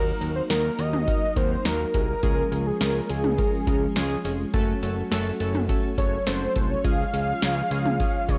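Synth-pop with a nostalgic, upbeat mood, this short excerpt moves at 104 BPM in a straight 4/4 in Db major, cycling through Ebm, Db, Gbm and back to Db. A thick, bold unison lead carries the melody between Ab4 and F5, its detuned sawtooth tone dark and reinforced by a sub octave. Beneath it, round analog keys with a chorus and a filter sweep play the accompaniment in decaying strokes, while an organ-like ensemble string pad holds vintage, warbling chords in the background. A fat, nasal bass built from detuned sawtooth and square waves sits low between F1 and Eb2, saturated and evolving. The electro analog drum machine comes in at 0.2 seconds and stands up front with a deep kick, punchy snare, metallic hats and toms, re-recorded in a large room, all set within a dry, gritty hardware sound with a digital ambience.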